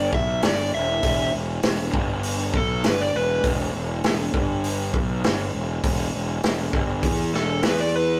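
Gritty and heavy, this blues rock and southern rock power-trio fragment, cut from a longer piece, centres on an overdriven electric slide guitar solo that plays from the start until 3.4 seconds and returns briefly at 7.4 seconds. Underneath, a growly fuzz-drenched fingered electric bass sits bright and up front throughout. A vintage acoustic drum kit supplies hi-hat, a punchy kick and a medium-tuned snare with a rolled-off top. The rough rehearsal-room sound carries a light reverb over a straight 4/4 groove moving between E minor and chordless breaks.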